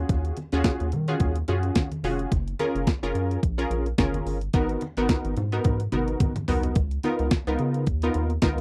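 Early-eighties boogie funk in G# dorian at 108 BPM, this danceable excerpt from a longer piece swings its 16ths and cycles through D#m11, F#maj7, G#m9 and C#13. A bright, punchy polysynth comp with chorus sits up front over a rubbery, hollow square-wave bass with a dark filter pluck, while a clean 12-bit drum machine, overdriven and thumpy, drives the groove and plays a fill from 5.7 to 6.8 seconds. Very quiet, low-tuned congas played with soft hands add a bright, thin-skinned texture beneath the dry, close 1970s-style studio sound with light reverb.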